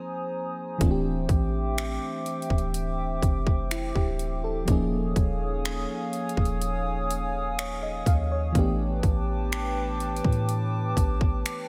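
Moody and sensual, this slow contemporary R&B excerpt moves at 62 BPM in a straight 4/4, tuned to A4 = 441 Hz. A mellow FM electric piano, round and dark with a noise layer and chorus, sits up front beside a hollow, flute-like pad whose sustained chords pump with sidechain. At 0.8 s the electronic trap kit and 808-style bass arrive, bringing a hard-clipped kick, metallic hi-hats and finger snaps over a deep, boomy sine bass. The harmony drifts through suspended ninth chords, from Bb9sus4 to D9sus4, then to Eb9sus4 at 4.7 s and A9sus4 at 8.6 s. A lush hall reverb soaks the mix in a dreamy haze.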